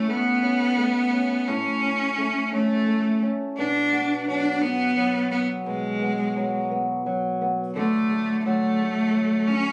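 A bright, biting, intense cello carries the melody with vibrato, bowed by a single player up front in this swaying, heartfelt six-eight pop ballad fragment. Beneath it, a dark, boxy flamenco guitar plays thumb-plucked acoustic accompaniment, also up front, with audible finger squeak, as the harmony moves from A to Bm at 3.6 seconds and to D at 7.8 seconds. Light reverb, studio ambience and compression colour this phone recording made in the room.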